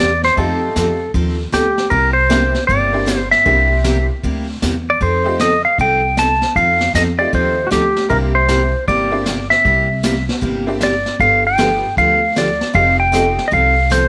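A cheerful, playful western swing tune in C mixolydian opens at once with a clean, twangy lap steel guitar carrying the melody up front, backed by a bright, picked dreadnought acoustic guitar and a woody, thumpy pizzicato upright bass. A vintage brush drum kit joins at 0.2 seconds with a high-tuned snare, tight kick and hi-hat, its top end rolled off. A jangly, metallic tack piano adds accompaniment from 0.4 seconds to 13.4 seconds. At 155 BPM with a swung eighth-note feel in 4/4, the band moves through F9, C9 and G9 chords, while the compressed lap steel uses slide and volume swells and the acoustic guitar shows some finger squeak. The lap steel sits clearly on top, and light reverb gives the ensemble a small-room ambience in this short section cut from a longer piece.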